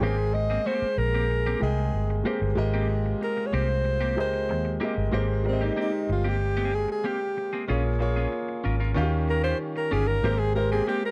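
Soul at 94 BPM in Ab major, smooth and warm, with a warm, close-miked alto saxophone carrying the melody up front and taking a solo from 5.1 seconds, over an intimate grand piano with audible action noise, a bright, twangy clean electric guitar riff bathed in spring reverb, a very quiet, distant French horn section holding mellow sustained chords, and a dark, round, foam-muted fingered bass punching through a dry, close 1970s-style studio sound as the chords move from Abmaj9 through Bbm7 and Eb9 back home in this cut from a longer piece.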